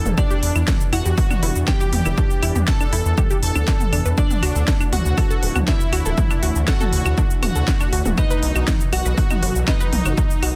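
A gritty, nasal driven synth bass pumps up front against a punchy electronic kick in this driving, melancholic melodic techno excerpt, where a smooth supersaw melody and a lush unison pluck arpeggio, both pumping and trailed by dub echo, ride over a cracking snare with claves, smooth hats, shaker and toms, while a crystalline wavetable pluck, a morphing chorused pad and a slow-attack analog drone sit very quiet beneath chords moving from Em7 to D to B in a dry, dense, heavily limited mix.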